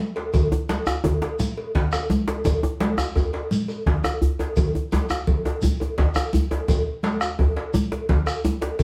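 Heard from further back in a studio room with a wet, short reverb, this festive, driving West African drum ensemble comes across as a slice of a longer performance in a straight 12/8 feel. A deep, dark bombo sits up front and carries the most weight, its small-room character giving the low end a close, solid thump from 0.3 seconds onward. Two djembes with buzzing metal rattles share the middle: one has a vintage, band-limited tone, while the other, played with soft hands, sounds close and dry and comes in at 0.5 seconds. High-tuned congas with thick, damped skins and hard hands add a warm, vintage, band-limited colour. A metallic cowbell rings out from the live room, and a grainy, mellow shekere sits quietest in the blend until the ensemble stops at 8.8 seconds.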